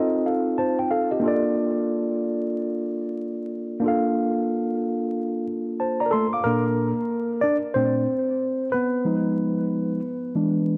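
A relaxed, cool hip hop groove at 92 BPM in 4/4, swung at 63% on the sixteenths, sets the pace for this short cut from a longer piece in Bb major. A tine electric piano carries everything alone from 0.0 to 10.8 seconds, ranging from Bb2 up to D6, sitting up front with a worn, slightly out-of-tune character, clean yet heard as if through built-in speakers and trailed by tape echo. The harmony moves from F7 to Bbmaj7 at 1.2 seconds and later settles on Fm7b5 at 9.1 seconds, with the same passage repeating from 6.4 seconds. A moderate plate reverb of 2.6 seconds lends space, while the whole recording carries the feel of old cassette tape, with warbly pitch drift and vinyl crackle giving it a faded, lo-fi haze.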